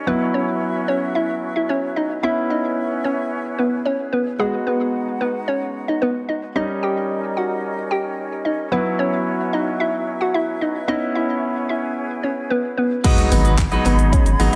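A straight 4/4 pulse at 111 BPM drives this bittersweet dance-pop excerpt in G# minor, where an intimate concert grand piano with audible action noise and a pure, vibrato-tinged small flute group pump under sidechain alongside a hollow, bouncy square-wave pluck melody treated with chorus and digital delay, until the drop at 13.0 seconds brings in a punchy, layered pop drum kit, a very quiet impact and a bright, twangy clean electric guitar riff in the background, followed by a thick, saturated sub bass at 13.3 seconds and a barely audible group handclap at 13.6 seconds.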